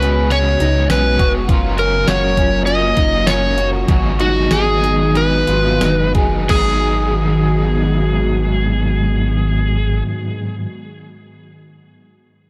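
A light reverb gives this hazy, haunting dream pop cut from a longer piece a soft sheen, with a dark, overdriven slide guitar carrying the melody up front while a crunchy guitar with tremolo and subtle chorus, and a slightly broken-up, picked electric guitar with analog chorus and delay, weave accompaniment and arpeggios underneath. An ethereal, detuned sawtooth pad with ensemble chorus holds mellow sustained chords over a deep, thick saturated sub bass, as a tape-warm, detuned 8-bit drum machine with a thumpy kick, medium-tuned snare, hi-hat, tambourine and crash drives the straight 4/4 feel until it stops at 6.7 seconds. In G# dorian, the tempo sits between 87 and 102 BPM and slows from 1.5 to 6.5 seconds as the harmony moves through C#7sus4, F#maj7 and G#m7.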